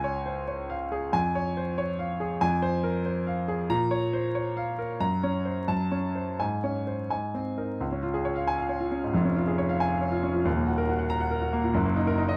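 A clear, up-front grand piano plays alone through this heroic, brilliant classical virtuoso study in D-flat major, moving with rubato at 92 BPM in a dotted-quarter 6/8 and spanning Eb1 to Bb5, its present, long-sustaining tone set in a moderate recital-hall reverb with close, detailed miking and vinyl crackle, while a new section arrives at 7.8 seconds before this 12.4-second fragment of a longer piece breaks off.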